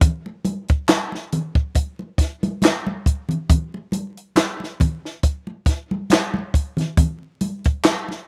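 An introspective, soulful R&B groove opens at once with a compact cocktail drum kit and congas playing together from the very start, moving at a slow 69 BPM in 4/4 with a light swing on the sixteenths. The kit sounds acoustic, dry and natural, its high-tuned snare and tight kick sitting up front alongside hi-hat and handclaps. The congas are bright and damped, with a thin, medium-tuned skin and a touch of small-room ambience, placed up front but set lower in the mix than the drums. The overall sound is close and dry, with little reverb and an open-air quality, overlaid with a layer of vinyl crackle. This short cut, lifted from a longer piece, stays in a single section and ends at about 8.3 seconds.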